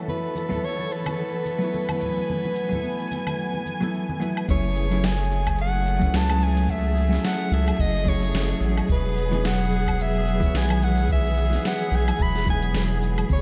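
A dark, bowed string section opens this wistful sunset chillout excerpt with soft-attack sustained chords played sul tasto, and a breathy soprano saxophone enters almost at once with a subtoned, jazz-style melody trailed by analog delay. Underneath, a smooth R&B drum kit lays down deep snare, silky hi-hat, shaker and woodblock in a lazy swung 4/4, joined by low-tuned congas played with soft hands that drop out at 4.3 seconds. A clean, compressed hollow-body jazz guitar picks its accompaniment from 0.5 seconds, its dark tone also echoing through analog delay. At 4.5 seconds a round, sine-like analog bass arrives up front alongside a deep electronic kick, giving the groove more weight. The harmony drifts from F#m9 to Emaj7 at 8.9 seconds, and a moderate cathedral reverb with a low-pass filter leaves the whole mix dreamy and softly blurred.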